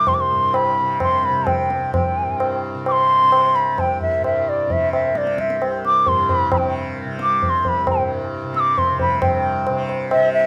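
A straight 4/4 pulse at 132 BPM gradually speeds up across this short cut from a longer Hindustani classical performance in raga Hamsadhwani on C, and the mood stays meditative and serene. The mellow bansuri carries the melody up front, its airy bamboo tone shaped by gentle vibrato, a soft attack and rolled-off highs, with a slapback echo trailing each phrase. Beneath it, the tanpura holds a low drone, softly plucked with a buzzing, shimmering resonance. The low-tuned tabla enters at 0.1 s and stops at 10.3 s, its short-ringing strokes also touched by slapback echo. The music shifts into a new section at 9.2 s. Recorded outdoors with little reverb, the sound is dry.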